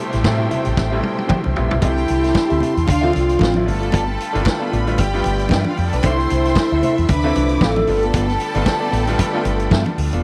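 A dry, close recording in a 1970s studio style, with little reverb, frames this glamorous, driving disco excerpt in a swung 4/4 groove. A vintage acoustic drum kit with a tight kick, a medium-tuned snare and a rolled-off top plays a fill from 0.8 to 1.8 seconds, while background congas add a bright, thin-skinned, hard-handed tone. Up front, a fingered electric bass sounds dark, round and punchy, and a clean semi-hollow electric guitar adds hollow-bodied accompaniment with a warbly pitch drift. A brilliant concert grand piano with deep bass fills out the harmony, moving from Am7 through C6, Dm9 and G9. A lush, bowed violin section carries a smooth second line, and a rich string section holds sustained chords in the background. From 1.8 to 8.0 seconds, an airy, mellow alto flute with a soft attack and vibrato carries the melody.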